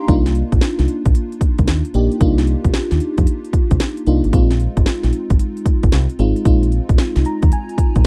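A lush, chorused FM electric piano with a soft pad layer opens this bouncy, confident new jack swing excerpt in C minor at 113 BPM, its detuned, dreamy chords moving from Cm11 to Bb7sus4 at 4.3 seconds. A round, dark fingered dub bass and a punchy house drum kit with cracking snare and crisp hats sit up front on a 66% swung sixteenth groove. The dry, close 1970s-style studio sound frames an electric piano fill at 7.0 seconds.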